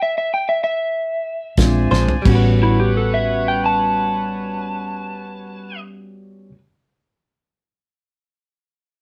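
A slightly broken-up slide guitar, played with fingerpicks, opens alone over a stop before a round, foam-muted bass, reedy electric piano, clear horn section with light vibrato and a dry 70s drum kit with a fat snare, heard only from 1.6 to 2.4 s and including a short fill, join at 1.6 s on a Bb9 that settles onto A13, with bright direct-recorded guitar stabs following at 1.9 s, in this swaggering, rollicking straight-eighth soul blues excerpt in A mixolydian, slowing from 100 toward 86 BPM, played live in one room with moderate studio reverb.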